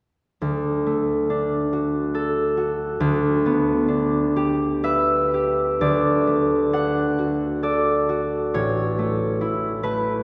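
A solo concert harp opens at 0.4 seconds, fingerpicked and placed up front, its ringing strings reaching from the low A1 up to F#5. This is a graceful, serene classical piece in triple metre, played with a flexible rubato feel that lets each phrase breathe. The harmony rests on a D chord, shifts to G over D, and returns to D when a second section begins at 5.8 seconds before settling on A. The acoustic harp has a warm tone, and a wet cathedral reverb gives the church or concert hall setting a long, lingering decay. Cut from a longer piece, the recording ends at 10.2 seconds.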